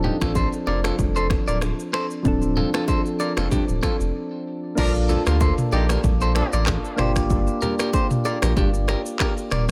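Hypnotic and sultry, this afrobeats excerpt rides a swung sixteenth-note feel in 4/4. Soft, round electric-piano-like synth keys sit up front, their mellow tone evolving under a filter sweep and colored by chorus and phaser, while a thick, saturated sub bass with a fast attack anchors the low end. An electric guitar at the edge of break-up plays a bright, compressed, picked riff treated with delay, and an electronic afro-pop drum kit with a deep kick, crash cymbal, finger snaps, handclaps, rim click, shaker and toms joins at 0.2 seconds. Very quiet congas and bongos ring in a live room beneath the kit. After a short break, a distant, roomy horn section with light vibrato adds a delayed second line from 4.8 to 6.5 seconds, and the mix stays dry throughout.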